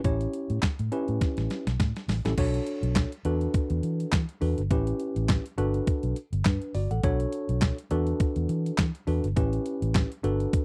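A crisp 8-bit digital drum machine sets the beat for this slick, danceable slice of early-eighties boogie funk, its sampler-style kit of thumpy kick, medium-tuned snare, hi-hat, handclaps and crash cymbal pushed up front and roughened with overdrive, as if re-recorded in a large room. A drum fill from 1.2 to 2.4 seconds carries the opening passage into the longer second section. Underneath, a vintage muted fingered electric bass sits close and punchy, its foam-muted, amped tone dark and round. A mellow tine electric piano supplies the chords with a worn, slightly out-of-tune character, clean and direct, moving from A9 through Bm7, E7sus4, A7 and Gmaj7. The sixteenths carry a light swing, and the whole piece has the dry, close feel of a 1970s-style studio recording, cut from a longer piece.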